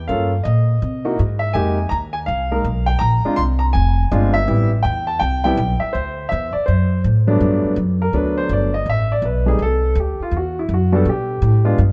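A warm concert grand piano carries the melody in this playful jazz piano trio fragment, its open tone, deep bass and long sustain sitting up front, and it takes a solo from 7.4 s once the music settles into G major. Beneath it, a woody, pizzicato upright bass with steel strings moves through a colourful run of chords at a brisk, swinging 164 BPM in 4/4. Light reverb gives the pair a touch of space, and the instruments are tuned slightly low, to A4 = 436 Hz.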